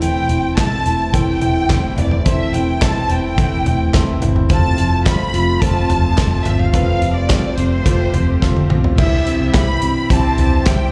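Heard through a club PA with light reverb, this anthemic, warm piano-driven pop fragment at 107 BPM in C major sets a lush, vibrato-rich violin section melody with slapback echo over clear, woody upright piano, a bright sawtooth pad with chorus, a bright picked steel-string acoustic guitar riff, a dark, round muted bass and a punchy, up-front drum kit with handclaps, moving from Am/E to F before a drum fill at 8.4 seconds leads into a C chord where a mellow French horn section enters at 9.0 seconds.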